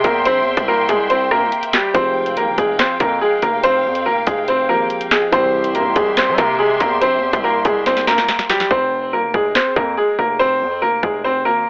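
A half-time drill groove at 142 BPM in F harmonic minor sets a cold, dark mood, with an up-front electronic kit of hard-clipped kick, sharp snare, rim click, handclaps and bright hats under a saturated, aggressive 808-style bass with a heavy, distorted noise layer and fast attack. A brilliant, woody upright piano carries the melody through a digital delay, its action noise audible and intimate, while a mellow, vintage concert grand and a distant, lush bowed string section with vibrato hold the harmony beneath. After a drum fill, the grand and strings stop at 8.7 seconds and the hi-hats drop out, leaving piano, bass and the remaining drums over a telephone-filtered, small-room sound in this fragment of a longer piece.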